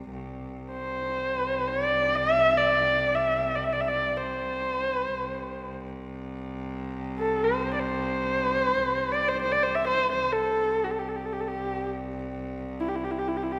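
Mongolian folk music, vast and proud, in which a biting, nasal bowed cello holds a low drone from the start and a husky, up-front horsehead fiddle enters at 0.7 s with an expressive melody full of vibrato and portamento, both set in the wet reverb of a scoring stage in this short excerpt from a longer piece.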